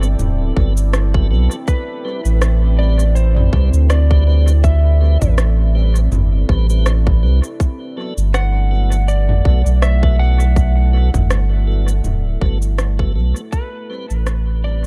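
A round, up-front sine sub bass anchors this meditative, deep ambient dub excerpt, joined from 0.6 seconds by a tight, overdriven electronic kick. Underneath, a dark, full-bodied detuned pad with chorus and built-in reverb sustains chords moving between Gmaj9 and Am9. A piping, scooped tonewheel organ plays stabs through a slow rotary speaker and dub echo, while a small-room electronic kit of rim click, shaker and toms carries overdrive and echo; from 1.7 seconds a slightly broken-up, compressed slide guitar sings a melody into dub echo in a dry, echo-heavy mix that fades out from 11.6 seconds.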